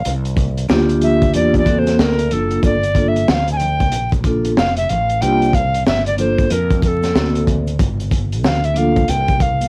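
Smoky and cool, this jazz-hop excerpt rides a swung 93 BPM groove in G dorian, with a mellow, reedy alto recorder soloing up front from the start, its airy tone carrying vibrato and a soft chiff through a cassette-tape haze. Beneath it, a crunchy breakbeat kit with a high-tuned snare and punchy kick sounds gritty and saturated on tape, while a fretless electric bass adds a warm, punchy, tube-saturated low end and a very quiet tube shaker and congas sit in a live room. A dark, ringing vibraphone with slow motor vibrato joins at 0.7 seconds and stops at 9.0 seconds, voicing chords like C9sus4, D7b13 and Gm7 under light reverb and vinyl crackle.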